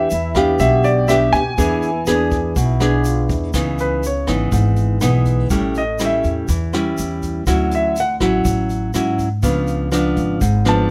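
This bossa nova excerpt at 122 BPM in a straight 4/4 feels wistful and melancholic, drifting through Em7 and E7 before settling into C# minor at 3.5 s. A clear grand piano carries the melody up front. A breathy trombone in the background adds a second line with vibrato and scooped notes until 3.5 s, when the piano takes over as soloist over C#m9, A7, Dmaj9 and C#7b9. Beneath it, a fingerpicked nylon-string guitar sits forward with a classical touch and audible finger squeak, while a woody pizzicato upright bass anchors the low end. A brushed jazz kit plays hi-hat, rim click and a boomy kick in a natural studio room, and a grainy, bright egg shaker sits far back in the mix. Light reverb gives the whole a gentle, intimate space.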